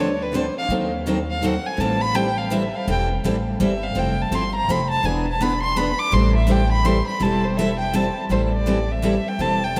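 Acoustic string swing in a bittersweet, fiery waltz-time lilt, with a smooth-topped bowed violin singing an expressive solo full of vibrato and portamento over one bright picked steel-string guitar, a second guitar tucked in the background, and a woody, thumpy gut-string upright bass played pizzicato up front, the whole excerpt bathed in the long wash of a vast, echoing cathedral.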